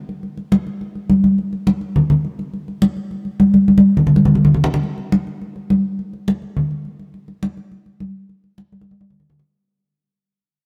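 A straight 4/4 groove of bright, high-tuned acoustic congas with thin skins and hard hands sits up front in moderate plate reverb, giving this fiery, danceable Latin cut from a longer piece a fill at 3.7 seconds before the second section fades out from 4.8 seconds under another fill at 8.7 seconds.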